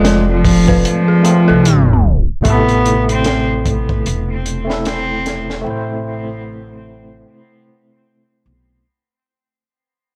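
Smoky and cinematic, this trip hop fragment in A minor moves at 75 BPM with a swung 16th feel, moving from F to A minor. A reedy, bowed cello carries the melody up front through a dub echo until 5.4 seconds, over a gritty electric piano with fast and harmonic tremolo and tape echo, a woody pizzicato upright bass, a crunchy breakbeat kit with a punchy kick, a high-tuned snare and hi-hat, and an eerie, inharmonic FM synth bell playing chorused arpeggios. The blown-out, overdriven recording carries vinyl crackle and light reverb; a tape stop hits at 1.6 seconds, and a fade-out runs from 2.5 seconds.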